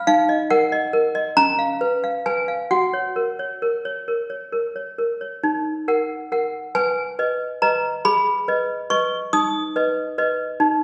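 A tender, innocent classical lullaby for solo toy piano in F# major, drifting in a rubato 6/8 at roughly 44-48 dotted-quarter beats per minute and cut from a longer piece. The toy piano sits up front, clanky and bell-like with a bright, slightly out-of-tune ring from its plastic hammers, and spans C#4 to Eb6 as the harmony moves from D#m through C#7 to F#, then turns to a new section at 5.4 s built on Ebm, B and Abm. A wet recital-hall reverb from a church or concert hall lingers around each note.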